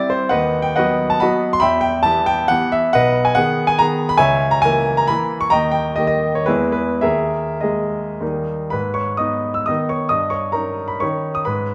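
Bathed in a wet recital-hall reverb, a clear, natural grand piano sits up front in this wistful, capricious fragment of a romantic triple-time dance in G# minor, played solo with dotted rhythms and free rubato between 97 and 154 BPM, its harmony settling on D# before a new section opens on G# minor at 8.7 seconds.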